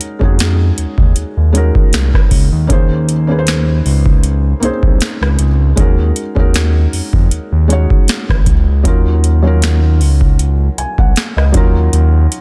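A booming analog drum machine, with its deep kick, crisp snare, rim click and metallic hats up front, opens this moody, longing contemporary R&B excerpt alongside a felt-muted upright piano whose dark, intimate chords carry audible action noise. At 0.2 seconds a smooth, saturated synth bass joins, sitting up front beneath a slow 78 BPM groove with a light 16th-note swing in Eb dorian. The harmony drifts between Ab9sus4/Eb, Bbm11 and Ebm9, wrapped in digital ambience and a dense, heavily limited modern master.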